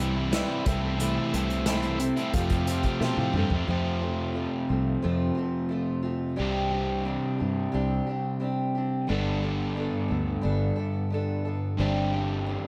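Folk rock and heartland rock with a jangly, nostalgic mood, this excerpt opens with a punchy acoustic drum kit played with bundle sticks, a reedy organ held in the background and a woody, vintage upright piano kept very quiet. Those three drop away around a drum fill that ends at 3.7 seconds, leaving a crunchy, double-tracked overdriven guitar riff up front, a dark parlour acoustic guitar picking accompaniment, and a round, foam-muted fingered bass. Light reverb adds a touch of room to the sound.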